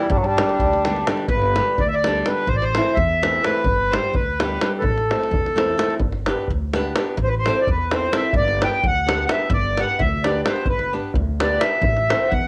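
Set in a driving 5/8 at 256 BPM counted in eighths, this Balkan wedding-band piece in G major pushes steadily faster over its twelve and a half seconds, cut from a longer performance with a virtuosic, exuberant spirit. A bassoon opens with a brief, classical-style phrase carrying light vibrato, heard up front yet roomy, before falling silent at 1.1 seconds. From 1.3 seconds the accordion takes over with a solo, its reedy, vintage tone marked by slow beating and a band-limited edge. Beneath it, a bright, fingerpicked flamenco guitar supplies accompaniment, a deep davul in a live room drives the percussion, and a pizzicato upright bass on gut strings adds a woody, thumpy low end. The harmony rocks between G and A minor, and the whole has the moderate studio reverb and character of a home recording on cassette.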